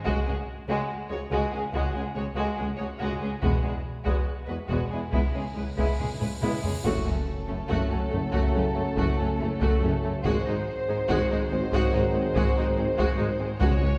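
Set back in a wet scoring-stage reverb, this dark, epic cinematic orchestral excerpt opens with a lush violin section carrying the melody over a second violin line, focused violas, cellos and a very quiet double bass section, all driven by heavy-stick taiko ensemble drumming; a huge, bright cymbal swell and impact arrives at 5.5 seconds, trombones and mellow French horns join in sustained chords from about 6.8 seconds with a very quiet tuba on the bass, and round timpani enter at 13.6 seconds.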